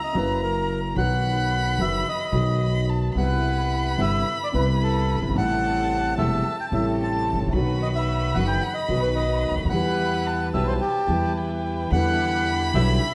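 A reedy bandoneon carries the melody alongside a bowed solo violin's expressive, vibrato-rich second line at the outset of this sultry, melancholic tango excerpt in E minor, moving at a rubato 110 BPM, with an intimate, up-front concert grand piano accompanying with deep bass and audible action noise, a woody, thumpy pizzicato upright bass underneath, and a veiled, con sordino string section adding background stabs from 3.2 seconds, all set in a moderate recital hall reverb.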